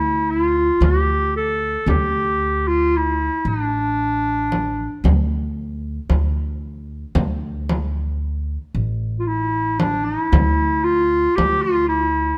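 A roomy, classical-style solo clarinet carries a melancholic, soulful melody in D makam ussak over woody pizzicato upright bass and a deep, saturated frame drum that enters at 0.8 seconds, giving this short fragment of a Turkish makam ensemble piece at 114 BPM in 10/8 a close, detailed sound with light reverb.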